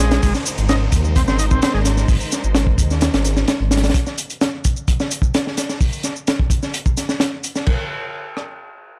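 Energetic and funky, this 129 BPM breakbeat passage sets a crunchy, up-front drum kit with a high-tuned snare, tight kick and dark cymbals against a dry analog shaker, while a deep, rumbling detuned saw bass and lush bowed strings with sidechain pumping hold an Abadd9 chord until 3.9 s, a buzzy combo organ riff with heavy vibrato and tape echo plays only through 1.8 s, and a very quiet downlifter sits underneath in a gritty small-room recording.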